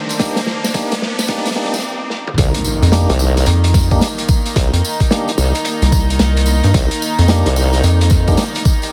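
Swaggering and gritty, this glitch hop excerpt in C minor struts at 110 BPM with a swung sixteenth feel. A distant, reedy string section holds dark Cm9 chords under pumping sidechain, and an electronic riser climbs over a muffled vintage kit fill, a jingly tambourine, an up-front overdriven knocking kick and overdriven tonewheel organ stabs with key click and tape echo, until a stop at 1.8 seconds. The drop lands at 2.4 seconds with an impact and a wobbling formant-sweep bass, joined at 2.8 seconds by a rubbery, hollow square bass, all under a heavily compressed, radio-like sound in a small room.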